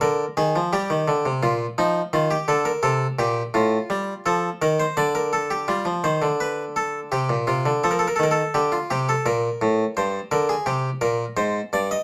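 A lone harpsichord opens this excerpt of a baroque-style two-part invention, its bright, plucked tone sitting up front in a moderate studio reverb. The instrument has an airy Italian character with one set of strings, and its two voices span from G2 up to Eb5. At 84 BPM in a straight 3/4, the mood is driving and serious, with the harmony moving from Bb through Eb, C5 and F/A before settling on Bb/D. At 5.7 seconds a new section begins on a G7 chord and presses on through C5 and F7. A brief unharmonized moment at 9.2 seconds gives way to a Gmadd11 sonority and a final turn to Ab, where the passage breaks off mid-piece.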